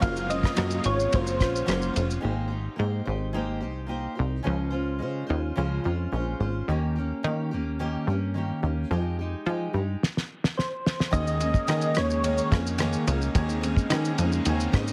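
A straight 4/4 pulse at 108 BPM carries this dreamy, laid-back slice of indie and bedroom pop, a short cut from a longer piece. A cloth-damped, thuddy drum kit sits up front with a fat snare, tight kick, rim click, shaker and dark ride cymbal, playing from the start until 2.2 seconds and returning at 10.0 seconds with a fill that leads back into the opening material at 11.1 seconds. A plucky analog bass with a punchy, funky filter snap runs throughout, alongside a fingerpicked steel-string acoustic guitar whose full-bodied dreadnought tone, audible finger squeak, subtle chorus and vibrato effect give the accompaniment a gently wavering shimmer. Soft, round synth keys resembling an electric piano carry brief melodic phrases at the very beginning and again near the end, coloured by ensemble chorus and tape echo, while a lush, detuned unison pad holds very quiet sustained chords in those same outer stretches. 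The harmony drifts through rich extended chords, opening on Gbmaj9#11 and settling on Eb7sus4, all under light reverb and a heavily compressed, radio-like finish.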